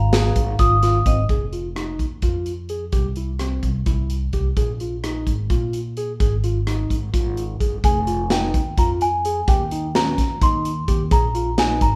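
Driving and intricate, this progressive instrumental band piece runs in 7/8 at 257 BPM counted in eighths, with a straight feel in F minor, and is cut from a longer piece. A bell-like, delicate celesta carries the melody in a featured opening solo up to 1.3 seconds, with a ringing, close-miked vibraphone played with hard mallets and its motor off adding a brief second line. The celesta then returns at 7.8 seconds for the closing stretch. Underneath, a woody, thumpy pizzicato upright bass on gut strings sits up front throughout, alongside a punchy acoustic studio drum kit with hi-hat, kick, rim click and a medium-tuned snare. A gritty, barky tine electric piano, overdriven through a combo amp, spins arpeggios across nearly the whole piece. The harmony moves from Absus2 through Fm7, C, Bb5 and Ab5 to Fm9 and Eb7, and the band sounds as if it is playing live in one room with light reverb.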